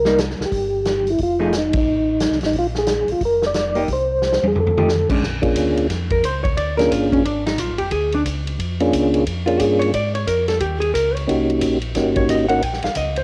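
A swinging 4/4 groove at 178 BPM drives this bluesy, soulful soul jazz organ trio fragment, cut from a longer piece, with the eighth notes swung and the drum kit supplying crash, ride, hi-hat, snare, toms and a punchy kick in a natural, big-room sound. A soft, flute-like tonewheel organ with percussive second-harmonic attack and chorus vibrato carries the melody up front through a slow rotary speaker, while a second, round and clean tonewheel organ holds down the bass line with audible key click, also through a slow rotary speaker. A dark, clean hollow-body electric guitar picks out accompaniment, drops out briefly, then returns and takes an up-front solo from 5.2 seconds over changes such as Bb7#9 and Eb7#9. The band hits an accent early on, and a drum fill from 4.2 to 4.9 seconds leads into the second section. The lead organ, guitar and drums carry a cassette-tape character, and the whole home recording sits in light, small-room reverb.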